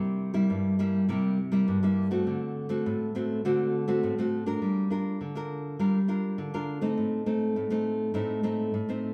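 Samba in G minor at 102 BPM, this short cut from a longer piece has a yearning, bittersweet mood, with a solo nylon-string guitar fingerpicked in a classical style and tuned to A4 = 437 Hz. Up front and warm with fresh strings, the guitar moves through C7 and D7 before settling into Gm7 at 4.6 seconds and Adim at 7.0 seconds, with audible finger squeaks. A wet reverb from a large studio gives the playing a spacious, lingering tail.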